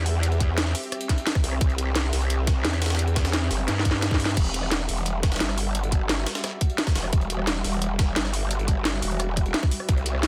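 A dense, heavily limited modern mix with little reverb frames this dark, futuristic cut of technical drum and bass at 174 BPM in E minor, moving from C to Emadd9 at 4.4 seconds. Up front, a growling, wobbling bass with overdrive, chorus and sidechain pumping sits under a swarming, detuned drone of slow-attack, granular sustained chords. A tight electronic kick and a layered kit with a cracking snare and metallic hats drive the drop, backed by a gritty, pitched-up jungle sampler kit in the background, with a drum fill from 3.7 seconds leading to a band accent at 4.3 seconds.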